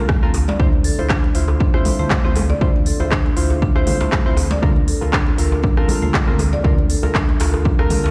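A driving 119 BPM afro house groove in 4/4 with a light 16th-note swing carries this spiritual D minor excerpt, where an overdriven, punchy electronic kick and crisp-hatted afro-pop kit of handclaps, hi-hat and rim click sit under background congas and a cracking djembe, while a round, deep analog bass pumps beneath woody marimba arpeggios and chorused, filter-swept analog key stabs that both trail dub echo, moving from C13sus4 to Dm7 and then to Bbmaj7 at 4.6 seconds inside a large studio reverb heard as if played on a big sound system in a bare room.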